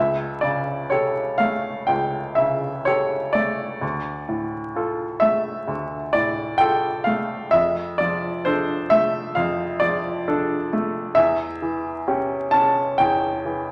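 A bright upright piano carries this stormy, passionate romantic character piece alone, its woody, brilliant tone sitting up front with audible action noise and a short sustain. The playing is rubato in 4/4 and spans from C#2 up to A5, giving the minor-key harmony both a dark low end and a glittering top. The harmony moves from A7/C# through Dm and Dm/F before settling on C#dim/E at 11.2 seconds, leaving the phrase unresolved. A reverberant recital hall surrounds the intimate instrument, while a layer of vinyl crackle and a dulled, rolled-off top give the recording an aged patina. Lasting about 13.7 seconds, this fragment is cut from a longer piece and ends mid-thought.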